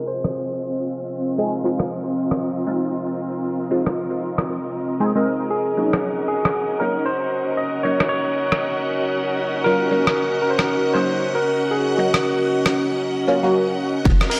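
Soaked in a wet echo-chamber reverb and softened by a low-pass filter, this late-night deep house excerpt is built on a swung groove from an up-front, gritty sampler-style soul drum kit with crash, hi-hat and rim click. A deep, moody sawtooth pad with chorus and sidechain pumping sits under a filter sweep, joined by veiled con sordino studio strings, a nasal, phased dub chord stab from 1.4 s, and a shimmering vintage string-machine violin layer from 5.8 s, as the harmony moves from Fm7 to Ebm7. A barky, lightly overdriven tine electric piano carries the melody with delay, returning at 5.5 s, and at 14.1 s a rubbery square bass, a punchy electronic kick and barely audible congas arrive briefly.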